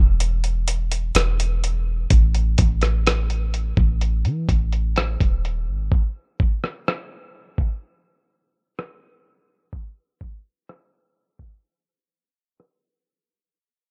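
The recording sounds dark and close, with little reverb and a low-pass filter shading the whole mix, while a filter sweep and a fade-out run across its 13.5 seconds. This excerpt of contemporary R&B moves at a slow 63 BPM in a straight 4/4, carrying a longing, sensual mood. A deep, round 808-style bass sits up front with a sine-like tone, fast attack and decaying notes, but it plays only until 5.9 seconds. A dusty soul sampler-style drum kit, compressed and overdriven to a gritty edge, carries on with hi-hat, rim click and a thumpy kick through 12.8 seconds. A break arrives at 11.6 seconds, bringing the fragment toward its close.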